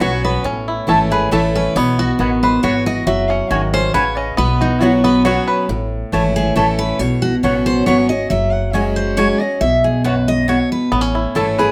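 Bluegrass in a joyful, rustic 3/4 at 138 BPM in B mixolydian, this excerpt from a longer piece features a warm, old-stringed dreadnought guitar carrying the picked melody up front over a second, bright, full-bodied guitar on fresh strings picking accompaniment, while a twangy, percussive fingerpicked banjo rolls arpeggios until 5.7 seconds and returns at 10.9, a woody double-strung mandolin adds stabs, and a dark, thumpy pizzicato upright bass on gut strings anchors the A, Bsus2 and F#sus2 changes, all in light reverb.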